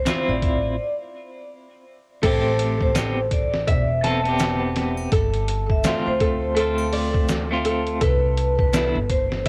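A bright, ringing vibraphone melody with motor vibrato opens over a woody, pizzicato upright bass at the start of this brooding, dark trip hop passage in A minor, cut from a longer piece and moving at 83 BPM with a swung sixteenth feel. Almost at once a clean, picked electric guitar with tremolo and a gritty, pitched-down sampler-style kit with a thumpy kick arrive up front, while a tube shaker and triangle sit faintly in the background, and a break runs from 0.8 to 2.2 seconds. At 2.2 seconds a fingerpicked flamenco guitar joins with arpeggios and audible finger squeak, its fresh strings washed in plate reverb, tape echo and cassette grit as the chords move from Am7 through G7sus4 to Cmaj7.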